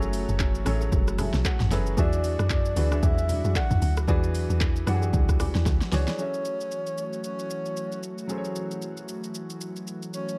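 A woody, punchy log drum bass anchors this late-night, deep amapiano excerpt in F# minor at 114 BPM, its fast, decaying hits sitting low beneath a deep house drum kit with a swung sixteenth feel. The drums are up front and tape-warm, with a deep kick, fat snare, metallic hats, handclaps, rim clicks, shaker and toms. A clear grand piano plays accompaniment throughout and adds an early fill, while an airy, breathy pad with chorus holds full-bodied, sustained chords that move from F#m9 to E9. Soft, mellow chord stabs with chorus and delay sit in the background, and very quiet bongos and congas ring with hard hands in a small room. A breathy, flute-like synth lead with vibrato, chorus and delay enters at 2.0 seconds to carry the melody. After a drum fill, the log drums, stabs and hand percussion drop away by 6.2 seconds, leaving piano, pad, lead and drums over a return to F#m9 in a dark digital ambience.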